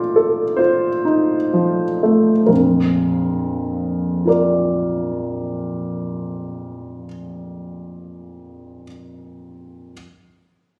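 Serene and dreamy, this brief excerpt from a romantic classical nocturne unfolds for solo piano in Bb major at a very slow 30-36 BPM, in 3/4 with a freely breathing rubato feel. A clear concert grand carries everything alone from 0.0 to 9.9 seconds, spanning Bb1 to D5, its tone smooth with a deep bass and a vintage character, placed up front in the sound. The opening passage slows down over its first 2.5 seconds, resting on an F7 chord over a Bb bass before settling onto a plain Bb chord at 2.5 seconds, where a new section begins. A moderate recital-hall reverb surrounds the instrument, lending a gentle sense of space. The recording has the intimacy of a phone capturing the performance from within the room, with added studio reverb.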